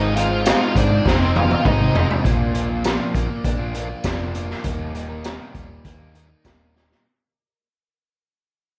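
Indie rock with a jangly, wistful mood, heard as a short cut from a longer piece in straight 4/4. An octave-fuzz lead guitar carries a dark, distorted melody through the opening, with tape echo. A very quiet metallic FM bell adds an inharmonic, warbling second line, and a swirling phased analog pad holds airy, detuned sustained chords; these three parts fall away by about 2.2 seconds, when the fade-out begins. Two overdriven electric guitars sit in the background playing a picked riff, one biting with a lush chorus and the other warm, while a hollow-body short-scale bass gives a round, amped low end. A raw garage drum kit enters at 0.2 seconds, up front and gritty, with a high-tuned snare, boomy kick, hi-hat, tambourine and toms, and drum fills close the opening and return near the end. The harmony moves from Ab6 to Bb and then Eb under a light reverb.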